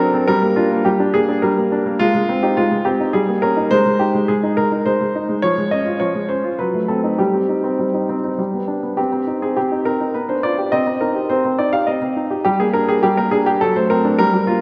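A clear grand piano sits up front in a wet concert hall, its notes wrapped in a reverb that lingers for about 1.9 seconds. This is a short cut from a classical-period sonatina in C minor, moving at 104 BPM in a straight 3/4 with an elegant, graceful air. The solo piano stays within a modest span from F3 to F5, and its tone comes across as present and finely defined against the spacious ambience. The harmony drifts through Gm, Ab and Eb7/G before an F#dim7 at 6.6 s leads toward a close on G. At 9.0 s the opening phrase returns, now grounded on Cm with G7/B, and it closes on a D7/F# at 13.6 s. The instrument is tuned slightly low, to A4 = 437 Hz.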